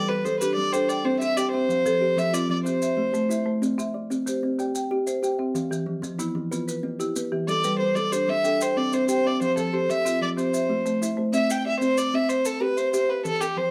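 This is a southern African traditional piece built on an mbira-style interlocking cycle in 12/8 and C major, moving at 124 BPM with a straight, hypnotic, rippling feel. A kalimba with a hollow, woody thumb-plucked tone and a dark, percussive marimba struck with hard mallets on rosewood bars both spin arpeggios through the cycle, while grainy maracas add a mellow shimmer underneath. A rich, floating solo violin, bowed sul tasto with a soft attack, carries the melody, dropping out after 3.4 seconds and returning at 7.5 seconds. The chords circle through G, C, F and A minor. At 11.3 seconds the excerpt moves into a second section on C, and the marimba falls away shortly after, at 11.7 seconds. The parts sit in a moderate small room that gives the whole cycle an intimate, close feel.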